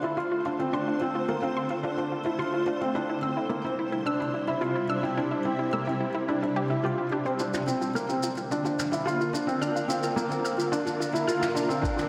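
A soft, felt-muted upright piano carries an intimate, mellow riff up front, its action noise audible through lush chorus and tape echo, over a cloudy, evolving granular pad of sustained chords and bright, detuned sawtooth pluck arpeggios in the background, both pad and pluck pumping with sidechain. In this moving, melancholic piano-and-strings electronica, a build-up starts at 7.4 seconds with filter sweeps on the pad and arpeggios, as brushed shaker and muffled toms from a small room arrive alongside a barely audible round sub bass. A thumpy, pitched-down kick lands at 11.8 seconds, and the dreamy mix is soaked in hall reverb.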